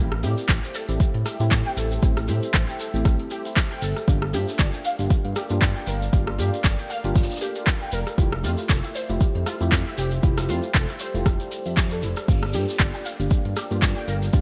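Late-night and hypnotic, this deep house excerpt in G dorian moves at 117 BPM with a swung 16th feel, cycling through Am7, Gm7, Fmaj9 and back to Gm7 under light reverb and a bright 1980s-style digital sheen. An overdriven electronic kick sits up front from 0.5 seconds beside a smooth, dark synth bass, while a layered house kit with metallic hats, claps, rim clicks and crash adds grit, joined by very quiet brushed snare and hi-hat and a grainy, saturated shekere. Above them, a warbly, lo-fi dusty pluck spins arpeggios through phaser and delay, soft detuned chord stabs decay with a moving notch, and a moody ambient pad holds sustained chords in the background, the synth parts all breathing with sidechain pumping.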